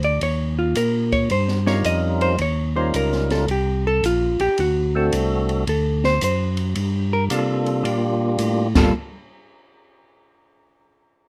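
A smoky, soulful soul jazz organ trio cut from a longer piece opens at once with a dark, clean hollow-body electric guitar soloing up front, picked over a tonewheel organ bass line that is full, lightly overdriven and colored by chorus vibrato, key click and a slow rotary speaker. An acoustic drum kit sits further back in a small room, with dark cymbals, a high-tuned snare and a boomy kick keeping a swung groove. At 1.7 seconds a second, percussive tonewheel organ joins with a fat melody in its mid register, its third harmonic percussion, vibrato, light overdrive and slow rotary speaker placing it up front beside the guitar. The harmony moves from Eb7 to D7 and settles on Gm9 before the chords drop away at 8.9 seconds. Light reverb surrounds the trio.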